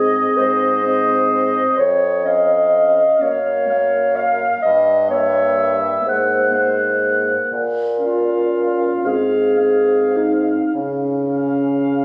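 A dark, up-front clarinet carries the accompaniment in this tender, lyrical excerpt from a slow romantic classical movement for wind quintet, unfolding in a rubato 6/8 at 34-43 BPM counted in dotted quarters, while a mellow oboe with vibrato sings a second line, up front yet roomy, a mellow French horn sits distant beneath, and a warm bassoon with light vibrato and a soft attack anchors the bass through harmonies from Ab through Gdim7 and Ab9 before coming to rest on Db, captured on a phone in a moderate scoring-stage reverb.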